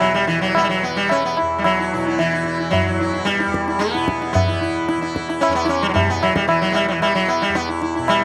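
A plectrum-plucked sitar rings out up front from the first moment, bright and buzzing with shimmering sympathetic strings, over a softly plucked tanpura drone and high-tuned, ringing tabla heard close and dry. This meditative, introspective Hindustani passage moves in a straight three-beat metre and gathers speed across its 8.2 seconds, cut from a longer piece. The sitar leads the melody between E3 and E4 while the tanpura's buzzing drone sits lower and quieter, all set in a small room with light reverb.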